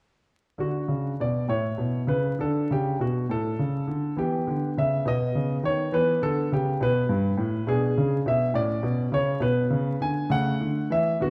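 Flowing and dance-like, this short classical passage is a baroque-style suite movement for solo grand piano, cut from a longer piece. It moves at 68 dotted-quarter beats per minute in 6/8 with a rubato feel, opening in D major and shifting to A major from 7.7 seconds. The concert grand plays alone from 0.6 to 11.3 seconds, sitting up front with a deep bass, a smooth, vintage tone and short sustain, ranging from G2 to G#5. The harmony travels through D, A, E minor and B before settling on B minor 6/9 and A chords, ending on A over C#. A wet stone-room reverb surrounds the instrument, and the dark production carries vinyl crackle and the grit of lossy compression artefacts.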